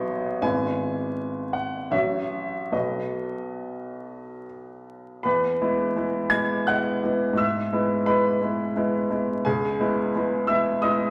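The recording opens on an intimate, woody upright piano placed up front in a wet recital hall, its audible action noise and a vinyl crackle lending a lived-in character to the clear tone. This is a romantic classical character piece for solo piano in E major, tuned slightly high at A4 = 444 Hz, moving in 3/4 with a rubato feel that lets the tempo drift between 69 and 89 BPM. The mood is warm and lyrical, with the piano spanning a broad register from G#1 up to G#6 across the short excerpt. The opening phrase settles on E/G#, then passes through F#m/A to B before a new section begins at 5.3 seconds on E. From there the harmony moves back to E/G# and reaches C#m7 at 9.4 seconds, and the passage ends at 11.1 seconds as a fragment cut from a longer piece.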